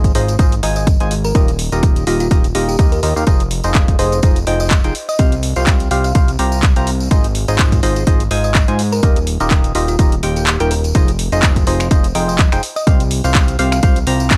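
Dry, gritty cassette-tape sound frames this soulful, bittersweet piano house excerpt in F minor at 125 BPM with a light 16th-note swing, where an up-front overdriven punchy kick, a layered house kit of finger snaps, handclaps and bright hats, and a background tambourine play alongside a fat, detuned sawtooth bass and hollow, wave-folded organ stabs treated with chorus, phaser and sidechain pumping, while a round, tine-like FM pluck with tape echo warbles behind them over Ab6, Ebadd9, Fm7 and Csus4, the kick dropping out briefly at 10.5 seconds.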